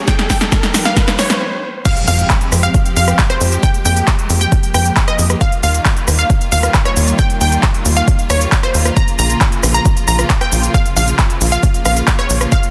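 A bright, detuned unison pluck carries the melody through delay in this euphoric, emotional uplifting trance excerpt at 135 BPM in F minor, pumping against the beat over lush, vibrato-rich symphonic strings holding sustained chords. A brief build-up with a drum fill and electronic riser stops at 1.4 seconds before the drop hits at 1.9 seconds with an impact, bringing in a tight, nasal, saturated sawtooth sequencer bass from 2.1 seconds. Meanwhile, a punchy, tape-warm electronic kick and an overdriven, layered dance kit with crisp hats, snare, handclaps, rim clicks, shaker and crash sit up front in a dense, heavily limited mix with light reverb.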